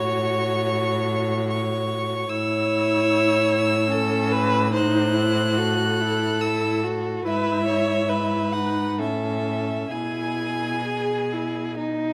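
Captured with close, detailed microphones in a moderate recital-hall reverb, this short cut from a slow romantic string quartet movement in 3/4 unfolds with lyrical, rubato feeling: the first violin sings a smooth, vibrato-rich melody high above the second violin's even inner line, the viola's soft-attacked, expressive accompaniment with touches of portamento, and the cello's bowed bass sitting up front, with the first violin falling silent at 11.8 seconds just before the others.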